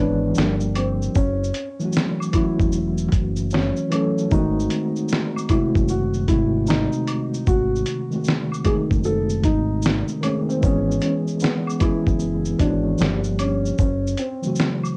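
Lo-fi hip hop at 76 BPM with a swung 16th-note feel, melancholic and reflective, this excerpt from a longer piece sets a felt-muted upright piano melody, soft and intimate with audible action noise and a cassette-tape haze, against a worn, slightly out-of-tune tine electric piano that sits up front, lightly overdriven with fast tremolo through a combo amp. A deep, round dub bass holds the low end until 14.1 seconds, while a gritty sampler-style drum kit with a thumpy kick and fat snare enters at 0.3 seconds, re-recorded in a small room. In the background, a vintage, band-limited tube shaker and woodblock with group handclaps add texture over chords moving from Gm7 and F#m7 through G#7b9 and C#m7/G#, all steeped in a home-cassette sound with moderate reverb.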